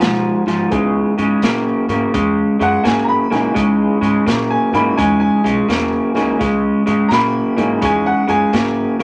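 Electric blues shuffle at 84 BPM with a smoky, soulful mood, cut from a longer piece, where a woody upright piano takes the solo over the whole 9 seconds while a slightly broken-up, lo-fi electric guitar riff sits up front, a thumpy pizzicato upright bass and a gritty, saturated breakbeat kit of hi-hat, tight kick and snare hold the swing, and an intimate concert grand with audible action noise adds background accompaniment from 0.7 to 8.5 seconds over G#m moving to C#m7, all in a small room.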